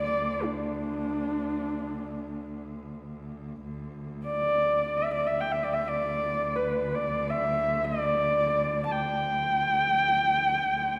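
Galloping and proud, this 11-second cut from a longer Mongolian folk piece in free time sets a dark, woody, husky horsehead fiddle up front, singing the melody with vibrato and portamento over a rich, nasal cello drone on a low D that sounds with a soft attack, all within the lingering reverb of a church or concert hall.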